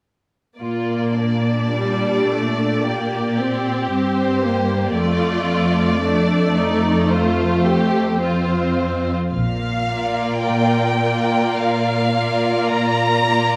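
Lyrical and warm, this short cut from a longer slow romantic movement for string orchestra unfolds in Bb major at a rubato pace of about 50-58 BPM in 4/4. The violins carry the melody with a soft-attacked, expressive vibrato, while a second violin line sounds lush and slightly distant beneath it. Violas supply smooth, even accompaniment, and the cellos hold the bass with a light vibrato, sitting up front in the mix. The harmony moves from Bb to F at 5.0 s and settles back on Bb as a new section begins at 9.4 s. Just before that return, a dark double bass section enters briefly around 9.3 s, adding a deep, sliding portamento note under the ensemble. A moderate scoring-stage reverb gives the strings a rich, spacious bloom.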